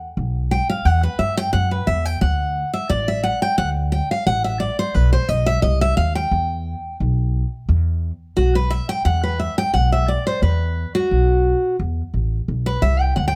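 A swung 175 BPM 4/4 pulse drives this rustic bluegrass excerpt in E minor, with a woody, growly pizzicato upright bass entering at 0.2 seconds and a bright, full-bodied picked dreadnought acoustic guitar, its fresh strings and finger squeak up front, joining at 0.5 seconds to play a solo over Esus2, D, B and Em changes, all in a light reverb.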